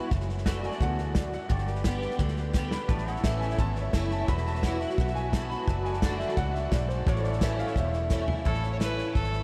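A dark, woody upright piano takes the lead from the opening of this easygoing, nostalgic honky-tonk country passage in A major at 173 BPM. It is backed by bright picked acoustic archtop guitar, twangy pedal steel chords in the background, a round foam-muted electric bass and a punchy, airy drum kit that adds fills. A very quiet bowed violin section brings soft sustained chords from 2.9 seconds, and a clear fiddle with light vibrato takes up the melody at 8.5 seconds, all set in a dreamy mix soaked in huge ambient reverb, with diffuse delay trailing the piano and fiddle and chorus thickening the guitar and steel.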